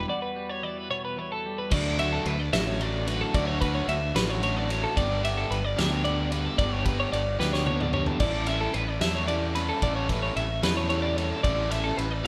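A bright, twangy twelve-string electric guitar traces clean arpeggios over a fuzzy, punchy electric bass while a second twelve-string adds up-front picked accompaniment on Em9, a brief break that hands over at 1.7 seconds to a crunchy, double-tracked overdriven guitar riff and a loose, roomy indie drum kit with dark cymbals and a fat snare. In an intricate, wistful mix of math rock and midwest emo in a straight 6/8, the band moves through Dmaj9, Gadd9 and A7sus4, with a drum fill at 7.4 seconds. The whole excerpt sounds like a live band in one room with light reverb, the arpeggiating twelve-string ringing through a spring reverb.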